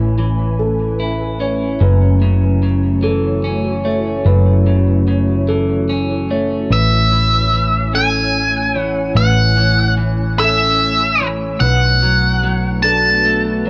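This hopeful, cinematic rock excerpt in a straight 6/8 opens with an ethereal, airy pad holding sustained chords, softened by ensemble chorus and its own reverb. Beside it, a clean, picked electric guitar plays arpeggios through an analog delay, while a felt-muted upright piano adds its own delayed arpeggios in an intimate, vintage tone. Underneath, a hollow-body short-scale electric bass sits up front with a round, amped sound. At 6.7 seconds an octave-fuzz lead guitar enters with a distorted, dark melody, also treated with analog delay and set forward in the mix. The harmony moves from Amaj7 to F#m7, returns to Amaj7, and reaches Bm7 at 11.6 seconds, all within a light digital ambience.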